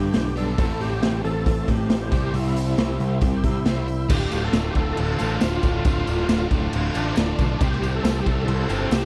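A driving, brooding classic rock groove in straight 4/4 is powered by a raw garage drum kit, up front with a punchy kick, medium-tuned snare and a pumping small-room sound, alongside a growling picked bass that is overdriven and bright. An overdriven tonewheel organ carries the melody with thick, gritty tone, key click, slow rotary speaker, chorus vibrato and slapback echo, while a very quiet, shouting second organ holds sustained chords. Dark and hollow-body overdriven guitars play riffs in the background with tremolo and spring reverb respectively, joined at 4.1 seconds by a double-tracked distorted guitar and a jingly tambourine as the harmony shifts to D minor.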